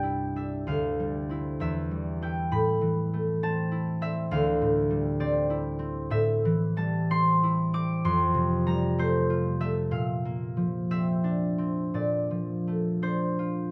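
Peaceful and dreamy, this classical fragment is a solo concert harp piece in 6/8 that moves with a free, rubato feel. The harp is acoustic and fingerpicked, with a warm, ringing tone placed up front, and it spans a broad register from C2 up to D6 across the full 13.7 seconds. Light reverb gives the strings a soft halo, while the overall production leans dark. The harmony drifts through rich extended chords, passing from Cadd9 and Dm11 into Am7, then settling onto Fadd9 at 8.0 seconds and colouring the close with Bbadd9 and Bbmaj7. The result is a gentle, suspended atmosphere cut from a longer work.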